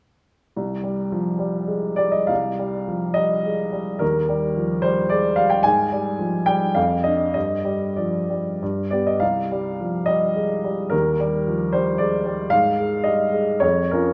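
Classical romantic character piece for solo piano, passionate and brooding, in which a warm, open baby grand with long sustain sits up front, moving in a flexible rubato three-beat lilt through dark harmonies within a moderate scoring-stage reverb, as a short passage cut from a longer work.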